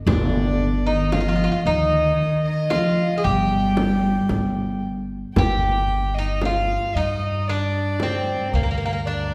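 This hypnotic, soulful Turkish makam ensemble piece in G minor moves at 114 BPM in a straight 10/8, tuned to A4 = 439 Hz, and is cut from a longer work. From the opening, a metallic, double-strung Greek bouzouki carries the picked melody up front, some strings doubled at the octave. Beneath it, a woody, growly upright bass plays pizzicato on steel strings, and a deep, large frame drum struck with hard hands sounds close and dry. A pure, floating violin bowed sul tasto and a dark, intimate cello with vibrato and a smooth top add second lines, the cello falling away at 4.8 seconds. At 5.4 seconds a new section begins as a warm bowed double bass enters in the background, holding a drone on G2 with vibrato and expressive portamento, and the frame drum drops out at 8.2 seconds, all heard from further back in a wet recital hall.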